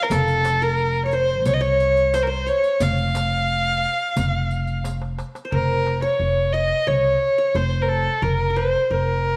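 Arabic maqam ensemble music in F hijaz, melancholic and soulful, moving at 89 BPM in a straight 4/4, cut from a longer piece. A dark, smooth bowed violin with vibrato carries the melody up front, joined by a bright-edged, plectrum-plucked qanun playing a second line in the background, while a woody pizzicato upright bass anchors the low end. A crisp, very quiet metal-shell darbuka and a riq with bright jingles keep time, with a drum fill arriving at 4.8 seconds; the riq drops out at 5.4 seconds, just before the second section begins at 5.5 seconds, all set in a small room with a moderate echo-chamber reverb.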